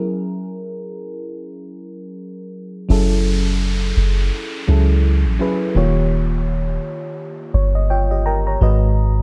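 A mellow FM electric piano, round and chorused with a noise layer, opens this dreamy, tender contemporary R&B excerpt at 84 BPM and a gently swung 16th-note feel with a filter sweep over an F#7 chord; at 2.9 seconds a deep, soft 808-style bass and an electronic downlifter arrive, the piano adds a fill at 7.2 seconds, and the whole sits in a dark, dry, close-sounding mix.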